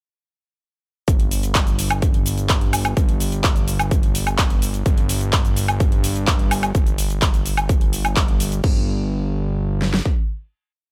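At 1.1 seconds this triumphant, uplifting festival progressive house piece opens straight into its drop at 127 BPM, with a punchy four-on-the-floor kick and a huge snare. Around them sit metallic hi-hats, a shaker, a high woodblock, handclaps and crash cymbal on a backbeat, while a fat, saturated, detuned sawtooth bass with a filter pluck follows the chord rhythm and pumps with sidechain. The electronic, layered drums sit up front in a small room, and the cymbals and percussion stop at 8.7 seconds as the bass, kick and snare carry the final note. The bass ends at 10.0 seconds and the kick and snare at 10.2, before the piece closes at 10.9 seconds.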